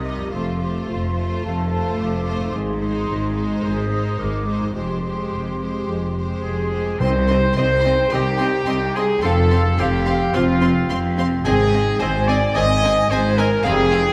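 A wet scoring-stage reverb gives this excerpt from a heroic adventure film score a spacious, swashbuckling sheen, moving at 108 BPM in a straight 4/4 through chords of F, Ab, Fmadd9 and Cm. A focused studio violin section carries the melody, while a lush symphonic violin section, an airy flute section and a clear solo clarinet weave second lines, and a smooth viola section fills the accompaniment in the background. An intense cello section and a distant double bass section anchor the low end, a very quiet fingerpicked concert harp rings out arpeggios, and a dark, roomy French horn section and a warm, very quiet trombone section hold sustained chords from 0.3 seconds. At 6.4 seconds a bright, present trumpet section adds tight stabs and a bright oboe joins with its own line. The timpani sounds briefly with round, soft-mallet tones from 7.0 to 7.8 seconds as the music moves into its second section, heightening the adventurous lift.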